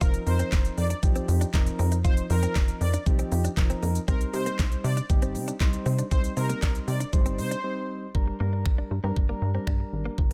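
Summery and upbeat, this dance-pop excerpt at 118 BPM rides a punchy, funky analog bass and an up-front electronic kit of knocking kick, fat snare, crisp hats, shaker, handclaps and finger snaps, while mellow, round electric-piano-like synth keys with chorus and a clean, direct-recorded electric guitar riff in the background sit beneath a smooth, detuned supersaw melody with digital delay that stops at 7.7 s, just after a short break begins and ahead of a move to a new section at 8.1 s, with the bass, keys and supersaw all pumping to the sidechain in a dry mix carrying a faint mains hum.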